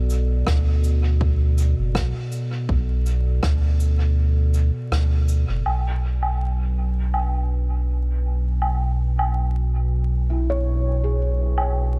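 Vinyl crackle and a dry, close sound frame this hazy, spacious ambient dub fragment, where a warbling, nostalgic pad holds a dark Bm7 chord over a round, up-front sub bass; muffled cabasa, rim click and woodblock drift through dub echo; an overdriven electronic kick sits in the background from 0.5 to 3.6 seconds; and a felt-muted upright piano with audible action noise and 12-bit sampler grit enters at 10.3 seconds with filtered, echoing arpeggios.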